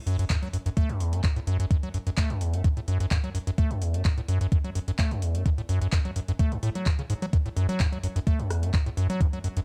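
A dark, warm production with light reverb frames this gritty, driving acid house excerpt in F# minor, moving at 128 BPM in 4/4 with a slight 53% swing on the sixteenths. A squelchy, hollow square-wave acid bass sits up front, playing a resonant, filter-swept riff between E2 and A3 with a fast attack and decaying notes, pumped by sidechain and trailed by tape echo. Alongside it, a thumpy, tape-warm, sampler-style electronic kick drum sits up front, entering at 0.3 seconds and stopping at 9.3 seconds. A tape-warm, booming analog drum machine fills in handclaps, rim clicks and metallic hi-hats, sitting further back in the mix. Cut from a longer piece, the short passage holds one section throughout, built on the bass riff and the drums.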